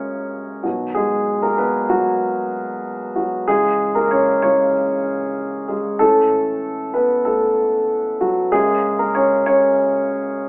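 Pop with a hopeful, anthemic mood, carried by a dark upright piano playing solo from 0.0 to 10.5 seconds, its woody, mellow tone sitting up front with long sustain. The chords move from F#add9 through B, C#m and A before returning to F#add9. A large studio reverb bathes the piano, and the live-room recording has a telephone-like quality, heard here as an excerpt cut from a longer piece.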